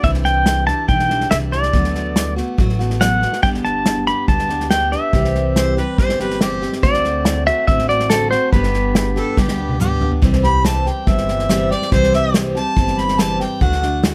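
Up-front, clean pedal steel guitar with volume swells and slide carries the heartfelt, easygoing melody of this honky-tonk, classic country piece over bright, full-bodied picked acoustic guitar, woody, thumpy upright bass and a punchy small-room drum kit played with bundle sticks, until a drum fill hands over at 10.2 seconds to a solo from the warm, lightly vibrato-tinged harmonica that entered at 5.6 seconds, all in a dry mix.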